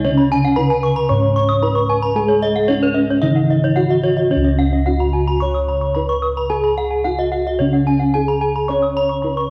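Set in a straight, even four-beat pulse, this excerpt of Balinese gamelan music feels brilliant and shimmering, its paired tuning giving each bronze metallophone a beating, ringing halo. Up front, a mellow metallophone struck with padded disc mallets carries the melody, while a second soft, padded metallophone supplies a lower accompaniment that drops out at 4.3 seconds, when the piece moves into a new section, and returns at 8.7 seconds. Above them, two bright, airy metallophones played with horn mallets spin continuous arpeggios high in the register. Round, beating bossed gongs, also up front and struck with padded beaters, anchor the bass with a touch of tube saturation. A moderate scoring-stage reverb surrounds the ensemble, and a worn cassette-tape character lends the whole recording a warbly pitch drift.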